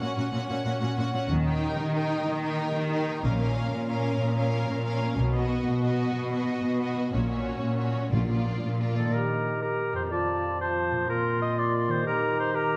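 This heroic, adventurous cinematic adventure-film cue moves at 123 BPM in a straight 12/8, and it is cut from a longer piece. The opening build-up is carried by lush bowed strings: a close studio violin section sings the melody with smooth vibrato, while a second symphonic violin line moves beneath it. An expressive viola section with soft attacks and portamento fills in the accompaniment, and an up-front cello section anchors the bass, joined at 1.3 s by a woody double bass section. Throughout, a ringing, fingerpicked concert harp plays arpeggios in the background, and a close, dry timpani hit lands at 8.1 s as the harmony moves from Gb/Bb toward Bb. A roomy solo oboe enters at 9.0 s, and at 9.1 s the strings give way to winds and brass over Eb, F, Bbsus2 and Eb chords: the oboe, a mellow clarinet and a pure, crisp silver flute carry second lines, while a bright trombone section holds sustained chords. 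The whole cue sits in a warm scoring-stage reverb.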